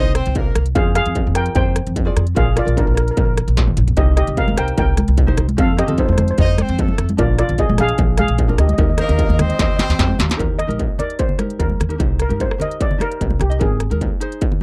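A shimmering lead steel pan carries the melody through this carefree, sunny calypso excerpt and takes a solo from 10.4 s, set over a woody pizzicato upright bass, an up-front electronic drum kit with a distorted kick and clanging snare, soft-handed congas that enter at 4.3 s, a light fingerpicked ukulele in the background, and a punchy, tight horn section with octave doubling that returns at 6.4 s, in a dry, close 1970s-style studio recording.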